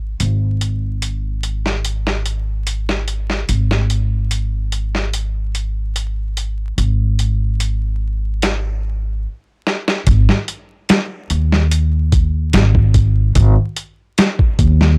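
A straight 4/4 groove at 73 BPM sets a brooding, dark trip hop mood in this excerpt cut from a longer piece. An upright bass opens the track alone, its woody, plucked steel strings sitting up front in a low register between G#1 and D#2. At 0.2 seconds a dusty soul sampler-style drum kit enters with a thumpy kick, a medium-tuned snare and hi-hat, compressed and gritty, with high-pass filtering on each drum. A drum fill at 9.7 seconds leads into a new section at 10.1 seconds, and both parts carry on together to the end. The sound is dry and nearly reverb-free, with a gritty hardware character and a layer of vinyl crackle.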